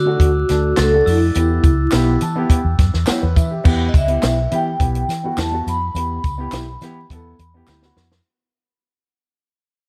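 A straight 4/4 beat at 104 BPM drives this passionate, uptempo 1960s-style soul excerpt in E dorian, cut from a longer piece and moving from D to E minor. A compact cocktail drum kit sits up front with a punchy kick, high-tuned snare, dark cymbals and a dry, natural sound, joined by a round, foam-muted vintage electric bass played with the fingers. Handclaps and tambourine add a close, dry group-clap layer in the background. The vibraphone carries the melody with medium mallets, its close-miked, ringing tone colored by motor vibrato and a slapback echo, while a bell-like glockenspiel adds a soft second line until 2.2 seconds. A dark, mellow concert grand with deep bass fills in the harmony and plays a fill from 1.9 seconds, and a slightly broken-up electric guitar through a small old amp punches in compressed stabs with a phaser, tucked behind the band. Light reverb and vinyl crackle give an aged feel, and the music fades out from 3.7 seconds as a drum fill closes the passage.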